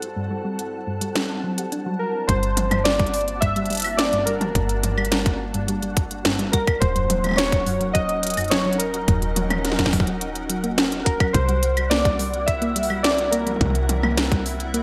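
A straight 4/4 pulse drives this glitchy, cerebral IDM excerpt. Up front from the start is an organic electronic kit of claves, crisp hats, woody snare and toms, overdriven and soaked in gated reverb, joined at 2.3 seconds by a tight, overdriven kick and a soft, round, dark FM bass. Warbly lo-fi synth keys carry a nostalgic melody with chorus and delay, and a gentle, tine-like thumb-piano pluck traces arpeggios, with a filter sweep on it through the opening seconds. All of this sits over a hollow, flute-like pad and a flickering grainy texture in the background, as chords move from Am7 through Gmadd9 and Ebm7 to C7 within a lush hall reverb and bright 1980s-style digital production.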